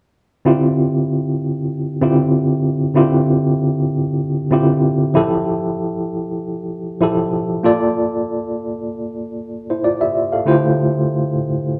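A solo tine electric piano opens the excerpt at 0.5 seconds, worn and slightly out of tune, lightly overdriven through a combo amp with a fast tremolo, sitting up front in a large, wet studio reverb. The smooth, silky soul feel moves in a lightly swung 4/4 through Dm11, Fmaj9 and Bbmaj7 before a brief new section returns to Dm11 at 10.5 seconds, the piano playing until 11.8 seconds.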